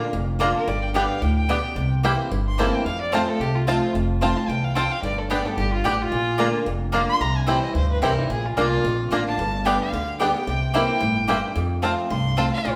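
A roomy, reverberant live-band sound carries this joyful, driving bluegrass passage cut from a longer piece, swinging at 220 BPM in F major, as a smooth, bowed fiddle with light vibrato takes the solo from the opening moments over a boxy, picked ladder-braced acoustic guitar and a thumpy gut-string upright bass, both up front, while mandolin stabs add a woody double-string bite and twangy, fingerpicked banjo arpeggios sit in the background.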